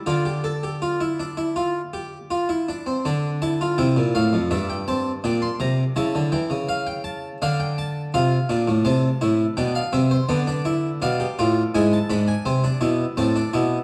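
A solo harpsichord with a brilliant, plucked Italian-style tone and octave strings sits close and up front as it works through a serious, contemplative baroque-style three-part fugue in a steady, straight 4/4, with the opening material giving way to a new section at 3.1 seconds, all set in a dark production within a recital hall's lingering reverb in this fragment cut from a longer piece.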